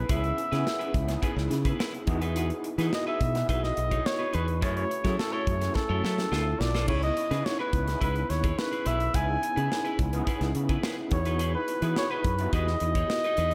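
A straight 4/4 groove at 106 BPM drives this polished 1980s jazz-funk pop fragment in C# minor, with a punchy, up-front studio drum kit entering at 0.1 s, a fill between 5.8 and 6.9 s, and a bright, direct fingered electric bass moving through C#m7, Emaj7, F#m7 and a passing Dm7. Over this, a warm, close-miked flugelhorn sings a bittersweet jazz melody with scooped notes and analog delay, while a barky, gritty electric piano with tremolo and chorus supplies the chords. A slightly broken-up, compressed guitar riff shimmers with lush chorus, and the whole mix feels slick and dreamy, soaked in plate reverb.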